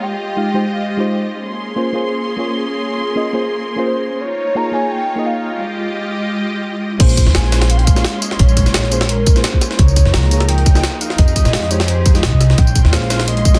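Velvety synth lead, mellow warbling FM electric piano with dub echo and a rich bowed string section open this dreamy, soulful liquid drum and bass excerpt in Bb dorian at 172 BPM, drifting over Fm9, Bbm9 and Db69 chords until the drop at 7.0 seconds brings in a woody pizzicato upright bass, a tight up-front electronic kick and two gritty, pitched-up jungle sampler-style kits, one low-pass filtered with crash, hats, snare and tambourine and the other high-pass filtered and set back in a large room, all under light digital ambience and a dense, heavily limited master.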